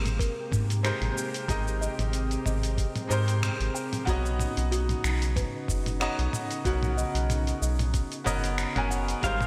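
Sunset chillout at 93 BPM with a lightly swung, sunny feel, where a brilliant grand piano with digital delay and a silky, vintage string machine with ensemble chorus float over a round, deep analog bass up front, while a gritty, overdriven sampler-style kit of finger snaps, hi-hat, shaker and toms, a thumpy electronic kick in the background and a buzzing, woody kalimba playing soft arpeggios move from Abmaj9 to Bmaj9 at 4.1 seconds; a twangy, clean pedal steel guitar with lush chorus enters at 9.2 seconds and a very quiet, glassy drifting texture at 9.4 seconds, all within a lush hall reverb and a bright 1980s-style digital production in this short excerpt.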